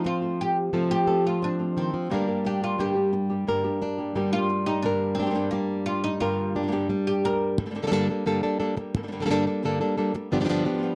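A dry, close 1970s-style studio sound frames this intense, fiery flamenco excerpt in G minor at 175 BPM, where an up-front fingerpicked flamenco guitar carries the melody with audible finger squeak, a second flamenco guitar adds stabs in the background, and a woody, deep, fretless oud with plectrum-plucked double strings plays a second line and solo until 7.6 seconds, as the harmony moves from F to G minor, then to Gmadd9 and G7.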